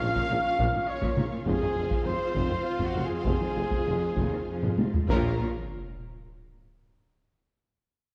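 Up-front taiko drums struck with hard sticks drive this heroic, dramatic excerpt of epic orchestral film score in 3/4, where a lush, vibrato-rich violin melody sits in the background alongside a pure, bright flute line and a second, expressive violin section gliding with portamento, while violas accompany, mellow French horns and a clear string section hold sustained chords, a soft-attack trumpet adds stabs, and cellos, very quiet double basses and a present tuba anchor the bass, until a drum fill at 4.6 seconds leads into a huge sub drop at 5.3 seconds, all wrapped in moderate scoring-stage reverb and the warbly pitch drift of worn cassette tape.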